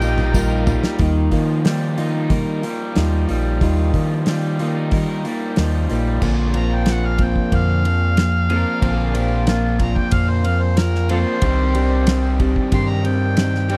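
This folk rock and heartland rock excerpt has a reflective, wistful mood at 92 BPM in a straight 4/4. It opens on a drum fill as a reedy, lightly overdriven tonewheel organ with key click and slow rotary speaker sounds very quietly beneath a jingly tambourine. Both drop out within the first second, along with a brief harmonica phrase. The core is a dry, up-front 1970s-style band: a damped drum kit with dark cymbals, a medium-tuned snare and a tight kick; a round, amped fingered electric bass; a picked plugged-in acoustic archtop with audible finger squeak; and a raw, bright, double-tracked garage guitar riff with overdrive. The chords move from Ebadd9 to Bbadd9 and then Cmadd9. At 6.6 seconds a gritty, amplified harmonica takes a pop-style solo with light vibrato and tongue slaps, while a clean pedal steel played with fingerpicks adds compressed slide lines and volume swells in the background from 8.5 seconds.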